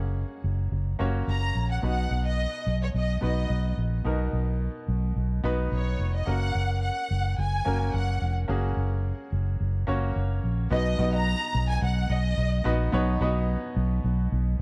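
A round, foam-muted electric bass sits up front in this warm, anthemic piano-driven pop excerpt at 108 BPM, with a bright, woody upright piano accompanying throughout and a lush, distant studio violin section carrying the melody from 1.3 to 12.7 seconds over F#, B and F# chords before moving to B at 10.7 seconds, all in a dark, dry production.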